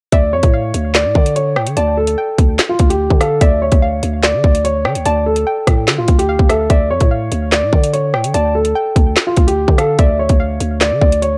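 Menacing and cold, this short excerpt of half-time drill at 146 BPM in D harmonic minor sets a dark, mellow concert grand piano melody, softened by a low-pass filter and tape echo, over a growling, buzzy 808-style bass and an up-front electronic drum kit of hard-clipped kick, woody snare, metallic hi-hats, handclaps and rim clicks with 12-bit sampler grit, while a soft, round, detuned pluck with chorus and tape echo traces a second line up high on a single Dmadd9 chord, all captured dry and gritty.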